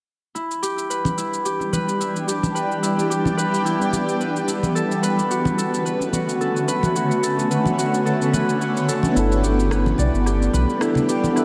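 Fingerpicked, ringing Celtic harp arpeggios fed through analog delay open this relaxed sunset chillout excerpt in G lydian at 109 BPM with a light 16th-note swing, joined by a tape-echoed electronic cabasa and rim click, damped, thick-skinned congas and a shimmering, ethereal ambient pad of detuned, granular chords, before a mellow tine electric piano enters at 9.1 s and a round, deep sine sub bass arrives at 9.2 s, in a softly reverberant, echo-heavy mix with rounded-off highs.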